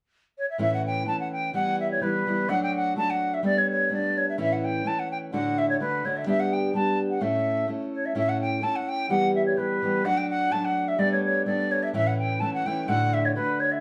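Celtic folk polka in 2/4 at 127 BPM, lively and bright, in A mixolydian with a gentle swing on the eighths, moving through chords such as A, Em, D/F# and Gadd9. A wooden flute carries the melody from 0.4 seconds with an airy, warm tone, soft attack and vibrato, while a fingerpicked steel-string acoustic guitar with fresh-sounding strings accompanies from 0.6 seconds. The same passage is heard twice in a moderately reverberant studio room, captured from further back, and this portion is cut from a longer piece.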